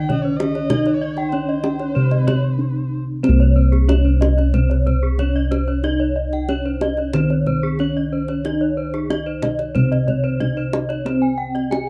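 A mellow bronze metallophone melody, struck with padded mallets, opens this shimmering, hypnotic Balinese gamelan excerpt at 92 BPM in C pelog, together with a dark, woody erhu second line with vibrato and portamento that bows only until 3.0 seconds. Two bright, horn-mallet metallophones ring out arpeggios over a round, beating bass of close-miked, dry bossed gongs sitting up front, and the paired tuning of every metallophone gives them airy, beating shimmer under plate reverb. A tight kendang played with hard hands adds compressed, saturated percussion in this rough home demo mix.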